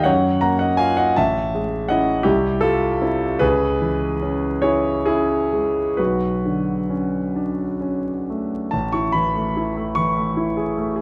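A clear concert grand piano sits up front in this dreamy, serene stretch of impressionist classical solo piano, cut from a longer piece and lasting 11.0 seconds. Its tone is natural, with a deep bass and long sustain across a range from A1 to C#6. The tempo drifts between 42 and 56 BPM in dotted quarters, and the 6/8 metre moves with a free rubato feel. The harmony moves through Gbmaj7, Amaj7, C, C#m7 and Bm9, with the key settling into A major from 3.4 seconds, and a new passage opens on Amaj7 at 8.7 seconds. A moderate recital hall reverb surrounds the instrument, while the dark, warm production adds vinyl crackle.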